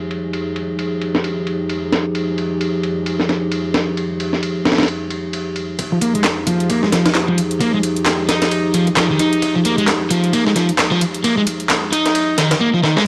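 Swaggering, energetic breakbeat in F minor at 132 BPM with a swung sixteenth feel, opening on a moody, detuned analog pad holding an Fm9 chord with subtle chorus and sidechain pumping over a compressed, pitched-up sampled break with a thumpy kick, high-tuned snare and ride, before garage-kit handclaps and metallic hi-hats arrive at 5.8 s and a crunchy, tube-saturated electric guitar riff with analog delay enters at 5.9 s, its filter sweeping through a build-up that ends in a drum fill at 12.8 s, all captured as a dry, gritty cassette recording with light reverb.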